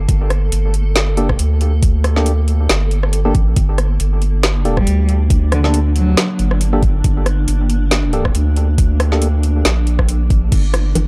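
A dry, gritty hardware sound frames this brooding, heavy deep dubstep excerpt at 138 BPM in G minor, half-time with a swung feel, where a round, soft dub sub bass and a knocking, tape-warm electronic kick sit up front beneath an overdriven garage drum kit of woody snare and metallic hats, a blurred, granular cloud pad holds a Gmadd9 chord in its own reverb, a hollow, wave-folded organ stab with chorus and dub echo punctuates from 1.2 s, a dark bowed cello with vibrato and portamento sings briefly through dub echo from 4.8 s, and close bongos and congas enter at 10.7 s.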